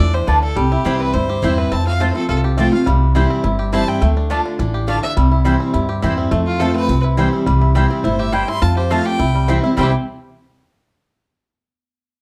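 Bluegrass with a lively, rustic character, this short excerpt from a longer piece drives along at a quick, straight four-beat pulse. A clear, biting fiddle carries the melody with light vibrato and an airy, somewhat nasal bow tone. A bright, full-bodied steel-string acoustic guitar picks the accompaniment, its fresh strings letting a little finger squeak through. A twangy banjo played with fingerpicks adds percussive arpeggios, and a round, double-strung mandolin joins at 0.3 s with short picked stabs, while a woody, thumpy upright bass sits up front on the low end. The production is dark and set in a moderate large-studio reverb, and the tune moves into a new section around 7.5 s.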